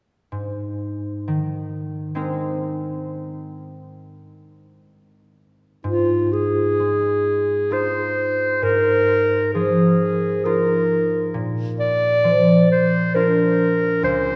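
Dreamy and luminous, this impressionist classical duo for clarinet and harp drifts in a gentle triple metre, its uneven beats stretched by rubato. The concert harp opens alone at 0.3 seconds, its fingerpicked, ringing strings sitting up front as it spreads an Abadd9 chord across its low and middle range. At 5.9 seconds the clarinet enters with a clear, present solo melody in classical style, placed up front and carried in its middle register above the harp's accompaniment. The harmony moves through Ab6 and Ebsus24/Ab before settling on Bb, as both instruments continue together until 14.4 seconds. A wet church reverb with a long tail surrounds the duo, lending the passage, cut from a longer piece, a spacious, glowing atmosphere.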